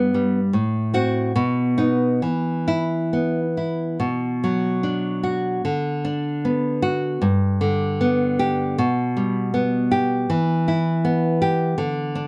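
A fingerpicked nylon-string guitar sits up front, its fresh strings warm, with light reverb and an audible finger squeak adding intimacy to this short passage from a longer romantic classical solo. The mood is intimate and wistful, moving with a rubato feel in 2/4 at roughly 65-81 BPM. The music opens in E minor, then shifts to B minor at 4.0 s, with the harmony moving from Bm through G and settling on Em near 10.3 s.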